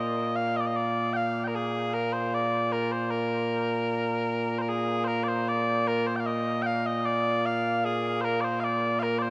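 Scottish traditional music for solo small bagpipes, proud and ceremonial in mood, moving at 76 BPM in a straight 2/4 and set in Bb mixolydian. The pipes carry the whole excerpt alone from 0.0 to 9.3 seconds, their tone mellow and sweet, with a continuous sound and vibrato spanning from Bb2 up to G5. The same phrase is heard twice, once from the start and again from 5.1 seconds, giving the short cut a stately, repeated shape. The pipes sit up front, yet the listener seems placed further back in the room, inside a huge, wet ambient reverb that rings on for seconds. That long, cavernous tail surrounds the sweet reed tone and lends the fragment a grand, hall-like solemnity.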